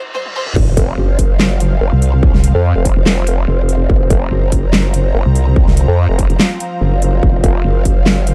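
A dark, dry production with a high-pass filter opens this heavy wobble dubstep fragment, cut from a longer piece, which runs at 144 BPM in 4/4 with a half-time feel and a slight swing on the sixteenths. It begins with a short break in which a reverse cymbal and a drum fill from the dubstep kit lead into the drop at 0.6 seconds, where an electronic impact sits in the background. From there the aggressive, weighty drop centres on F, with two basses up front: a growling, saturated bass with chorus and overdrive, and a nasal, resonant vowel-sweep wobble bass shaped by a formant filter. A distorted, layered electronic kick joins them, while the kit supplies a huge snare, metallic hi-hats, handclaps, toms and crash cymbal. Behind this, a lush, detuned supersaw pad holds sustained chords with sidechain pumping, and from 2.6 seconds a deep, moody ambient pad with a sub octave, moving notch, chorus and its own reverb adds a murky backdrop.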